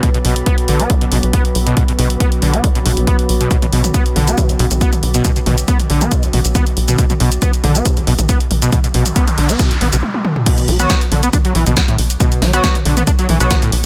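Driving peak-time techno at 138 BPM in 4/4, dark and industrial in mood, this excerpt is cut from a longer piece. A punchy analog-style electronic kick anchors the groove, joined by a drum machine supplying snare, hi-hat, shaker, toms and crash, while a tight sequencer bass with a plucky filtered sawtooth-and-square tone holds a low B under the sidechain pumping. Above it, an overdriven acid bass riff squelches and grits through resonant filter sweeps, thickened with ensemble chorus and delay. In the background sit an eerie, metallic FM drone, very quiet, and a deep, moody pad of detuned sawtooth and sine layers with chorus and built-in reverb, which pumps with the kick until it stops at 10.0 seconds. A noise sweep runs from 8.9 seconds into a drum fill and stop, and at 10.5 seconds the drop arrives, shortly bringing in a bright, nasal sync-sweep polysynth playing detuned stabs with chorus and delay. 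The whole track sits in a digital ambience.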